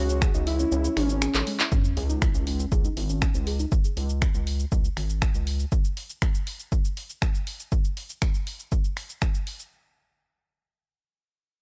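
A dark, driving melodic techno cut at 120 BPM in C# minor opens on an F#madd9 chord, with a fat, detuned analog lead carrying a short vibrato-tinged melody over soft, round plucked arpeggios with chorus and delay and a gritty, saturated synth bass pumping against the kick. Punchy analog drum-machine snaps, handclaps, hi-hats and shaker ride with the up-front electronic kick, which drops out at 0.7 s, and a drum fill follows at 1.3 s. At 1.7 s the music lands on C#5 with an impact and a very quiet sub drop, while filter sweeps move across the bass and arpeggios in a dry, gritty hardware-recorded sound with digital ambience.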